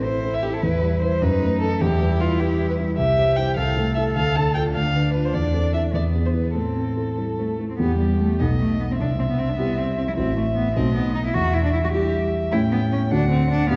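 In a rubato 6/8 at 102 BPM, this dramatic, stormy excerpt from a quick classical-period piano-trio movement in A minor, turning to E minor at 7.8 s, sets a smooth, even bowed violin melody with vibrato over a rich cello second line with soft attacks and expressive portamento, while an up-front, mellow concert grand with deep bass and short sustain carries the accompaniment inside a wet concert-hall reverb.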